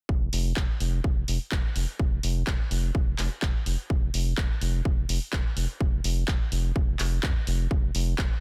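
A dry, dense and heavily limited modern master frames this short progressive house cut at 126 BPM in a straight 4/4, tuned to A4 = 438 Hz, with an expansive, bittersweet mood. A punchy, layered electronic kick drum sits up front from 0.1 s alongside a round, deep, wave-folded analog bass that runs dark and sustained between F1 and F2 with sidechain pumping. From 0.3 s a tape-warm house drum kit of handclaps and hi-hat, re-recorded in a small room, joins them at a lower level.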